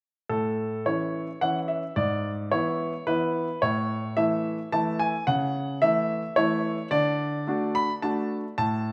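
In a rubato triple metre, this cheerful, playful classical-period sonatina fragment features a solo baby grand piano, clear, present and polished up front, moving through bright major harmonies from 0.3 to 8.9 seconds within a moderate recital hall reverb.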